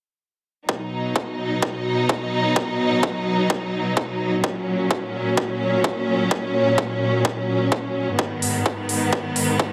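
Lightly reverberant with a digital ambience, this triumphant, uplifting festival progressive house excerpt in B major at 128 BPM sets a clear, lush symphonic string section with vibrato, pumping under sidechain compression as it holds sustained chords moving from B to F#/A# to G#m, over a punchy, tape-warm electronic kick drum re-recorded in a large room, with crisp hi-hats joining at 8.4 seconds.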